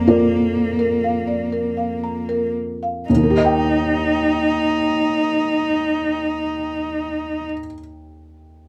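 Tender and hopeful, this short neoclassical excerpt for piano and strings moves at a slow, rubato 58 BPM in Eb major, slowing down through its first 3.1 seconds before settling onto an Eb chord. A felt-muted upright piano carries the accompaniment across the whole passage, its thick felt giving a mellow, intimate tone with audible action noise, placed up front in the mix. A solo bowed cello plays a second line in a narrow register from Bb3 to Eb4, dark and close, played sul tasto with vibrato and a soft attack. Marimba arpeggios with soft mallets on rosewood bars add a woody, round color from 0.1 to 3.0 seconds, then drop away. The cello ends at 7.4 seconds while the piano rings on until 8.7 seconds. The players sound as if they are together in one room, with moderate studio reverb lending a gentle sense of space.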